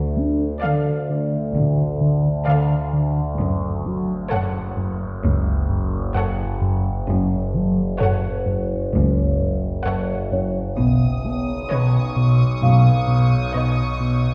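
Heard from further back on a wet scoring stage, this tense, ominous cinematic suspense cue moves at 65 BPM in a straight 4/4, drifting from Dm to F#m and then to Badd9 at 10.8 seconds. A smooth, up-front gliding synth bass with portamento carries the riff over a resonant, overtone-sweeping drone treated with chorus and phaser, while con sordino cello and double bass sections sit veiled in the background. Muted violin sections play a lush melody and a second line from 0.6 seconds, joined by a higher, dark violin texture near the close, and a delicate, bell-like small celesta glints at the start and returns at 10.3 seconds in this excerpt.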